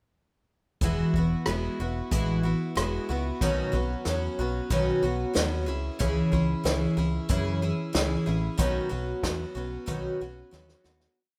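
A rough home demo mix in a small room gives this short folk rock and heartland rock piece an intimate, unpolished sound with an open-road, jangly mood at a straight, steady pulse. Up front, a bright, full-bodied jumbo twelve-string acoustic guitar strums eighths in open chord shapes, its octave-doubled strings shimmering across a verse that moves through Eadd9, Badd9 and C#m before returning to Badd9. Beneath it, a dark, round electric bass, heard direct and amped, drives eighth notes low in the register. An acoustic drum kit played with bundle sticks sits distant and roomy in a studio room, keeping a rock groove with hi-hat, a punchy kick, a medium-tuned snare and rim clicks. The music begins fading at 8.6 seconds, and a drum fill at 10.5 seconds closes the piece.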